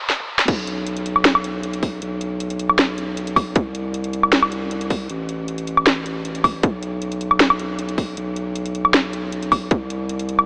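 A trap drum kit sits up front in this dreamy, emotional future bass passage at 156 BPM, in a half-time 4/4 feel, with a sharp snare, metallic hats, crash, toms and woodblock playing a brief fill before the drop lands at 0.5 seconds. A hard-clipped electronic kick joins there until 9.8 seconds, alongside a deep, thick, saturated sine sub bass with a fast attack and sustained notes between A1 and C2, pumping from sidechain compression. The whole mix is bathed in moderate shimmer reverb and high-pass filtered into a thin, AM-radio-like tone.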